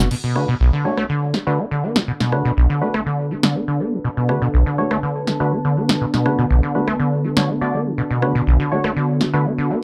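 A squelchy, resonant sawtooth acid bass drives this trippy acid house excerpt in B minor at 122 BPM, its riff colored by overdrive, lush chorus and cassette tape grit. It sits up front beside a punchy analog drum machine whose crash, rim click, shaker and tape-warm snare hold a straight 4/4, while a smooth, detuned analog pad sustains a Bm7 chord in the background under a filter sweep. A hollow, organ-like percussive stab with analog chorus and tape echo carries its own filter sweep from 0.4 seconds, and a deep, moody ambient pad with built-in reverb and a moving notch drifts in at 1.4 seconds, set in a moderate studio room.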